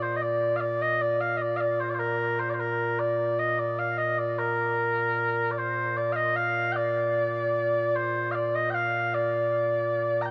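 A straight 6/8 at 101 BPM carries this proud, ceremonial Scottish pipe tune in Bb major, played solo by mellow small bagpipes whose sweet, continuous tone with vibrato sits up front in a huge ambient reverb within a dark, warm production, moving into a second section at 5.6 seconds before this short cut from a longer piece ends at 10.3 seconds.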